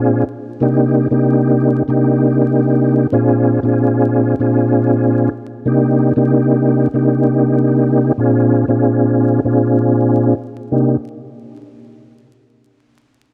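A soft, flute-like tonewheel organ plays alone and up front from 0.0 to 11.0 seconds in this tough, moody hip hop cut from a longer piece, swinging at 95 BPM in C minor as it alternates between Bb9 and Cm9 chords, its clean tone colored by chorus vibrato, a fast rotary speaker, cassette tape and a low-pass filter swept from 0.6 to 10.7 seconds, all set in a dark production with moderate plate reverb and vinyl crackle.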